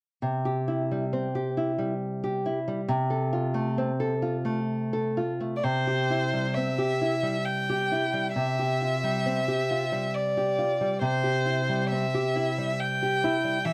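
A fingerpicked nylon-string guitar opens at 0.2 s, small and up front with audible finger squeak, setting a warm, lyrical romantic mood in C major at a rubato 67 BPM in 3/4, tuned to A4 = 438 Hz. At 5.6 s a single bowed violin enters with a focused, clear melody carrying vibrato, sitting up front beside the guitar's accompaniment as the harmony drifts over a held C. A light reverb gives the duo a gentle sense of space, and the passage is cut from a longer piece, ending at 13.7 s.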